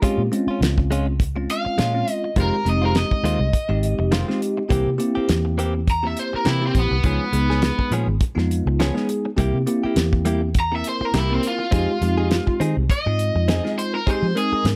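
An overdriven, raw garage guitar carries the melody up front from 1.5 seconds, its bright picked tone cutting through this brooding, mournful straight-eighth soul blues in F minor at 102 BPM, with a light 16th-note swing. Beneath it, a bell-like tine electric piano with a phaser plays accompaniment, while a clean, direct-recorded electric guitar adds compressed, picked stabs. A damped 70s drum kit sits close and dry, with a fat snare and tight kick alongside the hi-hat. A vintage, foam-muted fingered bass enters at 0.2 seconds, dark, round and amped, anchoring the low end. The chords move from Bbm7 through Fm7, C7, Db7 and C7 again before settling back on Fm7, all within light reverb in this short passage cut from a longer piece.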